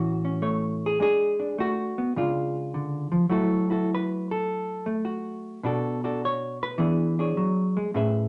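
A dark, rolled-off sound sits in a wet club reverb, with the hollow-body electric jazz guitar placed up front and played clean with the fingers. This sophisticated, warm solo jazz excerpt swings at 104 BPM in 4/4, moving from A through G#m7b5 and C# before settling into F# minor at 3.3 s. From there the guitar takes a solo over F#m7, Bm7 and E13 until it ends at 8.3 s.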